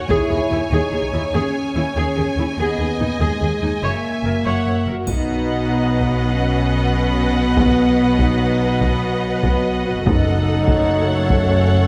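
A 12/8 pulse at 96 BPM drives this dark, dramatic cinematic excerpt, with a heavy-sticked, band-limited taiko ensemble striking at the opening and returning at 5.1 seconds, when a tight, very quiet trombone section joins the sustained chords and a close, dry triangle flicks briefly. Lush, vibrato-rich violin sections carry the melody and a smooth, distant second line over focused violas, intense cellos and a close, even double bass section, while a present French horn section holds chords. Soft, round timpani stroke F#2 at 10.1 seconds as the harmony turns to F#m, all bathed in a wet scoring-stage reverb.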